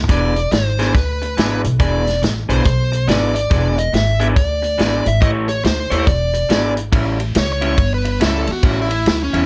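A swung 4/4 shuffle at 140 BPM drives this short, swaggering and soulful electric blues excerpt, tuned to A4 = 441 Hz. A vintage drum kit recorded in a small room sits up front with a punchy kick, a medium-tuned snare, hi-hat, ride and toms, its top end rolled off for a natural sound. A woody pizzicato upright bass, also close and present, holds down the low end between E1 and E2. Over the E7 and A7 changes, an electric guitar through a small old amp plays a lo-fi, slightly broken-up picked riff, while a dark, smooth lead guitar with overdrive and plate reverb carries the melody. At 6.9 seconds the music moves to A7 and a new section, where the lead steps out into a solo that runs until 9.5 seconds, all in a lightly reverberant room.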